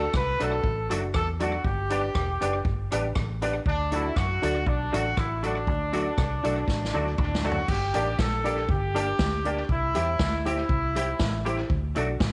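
A warm horn section carries the melody over dark, woody upright piano stabs, a clean semi-hollow electric guitar with ensemble chorus, a round foam-muted fingered bass and a roomy big-band drum kit with tape echo on this joyful, bouncy ska excerpt at 119 BPM in D mixolydian, where a drum fill at 6.7 seconds leads into a shift toward G minor and C before resolving back to D.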